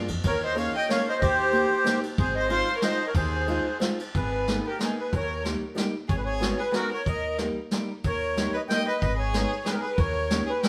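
Nostalgic and bittersweet, this short cut from a longer musette waltz moves at 185 BPM in a lightly swung, rubato 3/4, with a reedy, sweet accordion carrying the melody up front over a smooth bowed violin second line with vibrato, a boxy fingerpicked archtop guitar with audible finger squeak, a woody pizzicato upright bass and a brushed drum kit with dark cymbals and a rolled-off top, the band playing live together in a stone room with moderate reverb as the harmony turns from Ab major to G# harmonic minor at 4.1 seconds.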